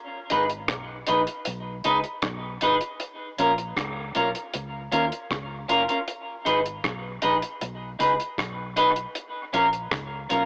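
Hypnotic and meditative, this short dub reggae fragment sets a clean, up-front picked electric guitar drenched in lush chorus and dub echo over a round, punchy foam-muted fingered bass and a dark, rolled-off reggae kit of hi-hat, tight kick and rim click, as G#m and A#m alternate through a moderate spring reverb with a home-cassette, AM-radio sound.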